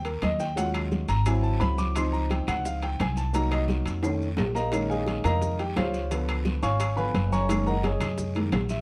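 A natural-toned baby grand piano takes the solo up front through rich extended chords that settle on Gb69, over a woody, dark pizzicato upright bass in this sophisticated, danceable Afro-Cuban jazz excerpt at 174 BPM, with ringing, saturated metal-shell timbales, round low-tuned bongos, medium-tuned congas, grainy maracas, vintage claves and a raspy guiro in a dark production with light reverb and a brief drum fill at 4.0 seconds.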